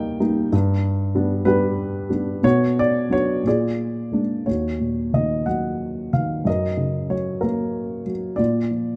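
In 6/8 at 58-64 BPM counted in dotted quarters, this short excerpt of lyrical classical solo piano moves with a free, rubato feel and a wistful, reflective mood, settling into Eb minor at 4.5 s. A dark, mellow baby grand carries the whole passage alone from D#2 to G5, its intimate, natural tone sitting up front with short sustain and audible action noise. Close, detailed miking and light reverb frame the harmony as it drifts from D# through G and Bm to A#7, then Ebm7, Gb and finally Bb.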